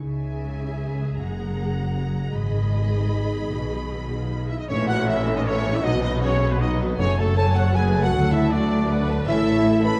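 Adventurous and determined, this heroic film-score excerpt in C# dorian moves at a brisk 157 BPM in 3/4, opening on lush strings with a rich violin melody, a dark, distant second violin line, background violas, a ringing fingerpicked harp, and a bass of focused double basses and cellos, while a very quiet cymbal swell and tam-tam rise at 2.3 seconds. At 4.5 seconds an airy, hollow flute, mellow French horn chords and clear trumpet stabs enter, just before a band accent at 4.7 seconds brings in tight trombones, all bathed in a dark recital-hall reverb.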